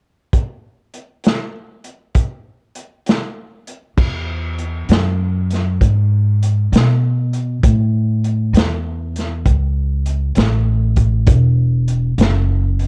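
This slow blues excerpt in 12/8 opens at 0.3 seconds with a crunchy breakbeat drum kit alone, its crash cymbal, hi-hat, kick and snare sounding dark, saturated and gritty, with a tight kick, a medium-tuned snare and a rolled-off top. At 4.0 seconds a pizzicato upright bass on steel strings enters, woody and up front, ranging from E1 to B2 and carrying the piece in E major until the close at 12.9 seconds. The tempo sits at 66 BPM counted in dotted quarters, and the feel is straight. The mood is rollicking and soulful, the drums carrying a small-room character. The whole recording is dry, with little reverb, and has the worn sound of old cassette tape, with a warbly pitch drift running through it.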